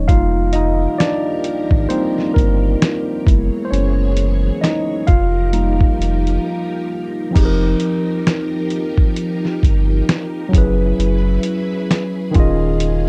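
Nostalgic and melancholic, this lo-fi hip hop fragment moves at 66 BPM with a lazy 16th-note swing, opening with a worn, slightly out-of-tune tine electric piano that takes the lead until 7.4 seconds, colored by cassette tape and a low-pass filter. A deep, round sine sub bass and an up-front, compressed sampler-style drum kit, with a thumpy kick, fat snare, hi-hat and crash, anchor the groove, while a lush vintage string machine sustains soft-edged chords through ensemble chorus and its own low-pass filter. The harmony drifts between F9sus4 and Gb9sus4 before settling on Eb9sus4, and a break at 6.4 seconds leads into the second section, all wrapped in dark, warm production with light reverb.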